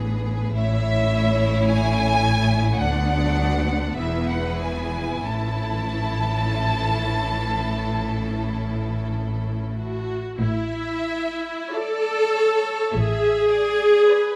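An up-front, smooth viola section carries the accompaniment in this serene, rubato slow movement for string orchestra, cut from a longer piece, while a lush violin section sings the melody from 0.5 s over a more distant violin second line, and bright cellos and expressive double basses, touched with portamento, anchor the bass until 13.9 s, all caught in close, detailed studio sound with light reverb.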